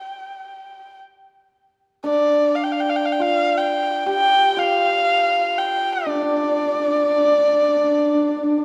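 Chinese traditional chamber music, wistful and graceful in a free rubato feel, with a dark, intimate erhu singing the melody up front, its light vibrato, soft attack, airy bow and portamento sliding between notes, while a mellow, shimmering hammered dulcimer rings out a second line an octave lower, both played throughout this short 8.6-second excerpt and bathed in a moderate concert-hall reverb as the passage shifts into a new section at 2.0 seconds.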